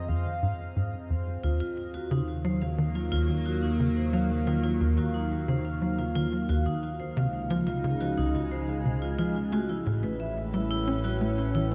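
A breathy, flute-like synth lead opens this cosmic, expansive stretch of ambient, sequencer-driven space music. It holds a single high note with tremolo, analog chorus, shimmer reverb and tape echo before dropping out at 1.1 s. Beneath it, an evolving wavetable pad sits up front with slow-attack, detuned, morphing chords, while a vintage analog drone warbles in the bass with chorus. From 0.1 s a tight, punchy sequencer bass drives a saturated, dark, filter-plucked riff through analog chorus and tape echo. At 1.4 s a vibraphone, struck with medium hard mallets and its motor off, adds metallic, ringing arpeggios bathed in shimmer reverb and echo. The harmony moves from Fm through Ebm and Dbsus2 to A, and the dreamy mix, cut from a longer piece, is soaked in a lush hall reverb.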